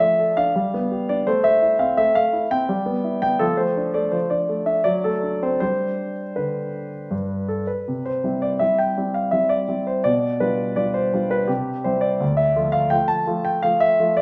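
Classical-period piano sonatina in a graceful, playful triple metre with rubato, where a solo grand piano, polished and up front, carries the music through moderate recital-hall reverb and moves into a new section at 7.9 seconds of this brief passage cut from a longer piece.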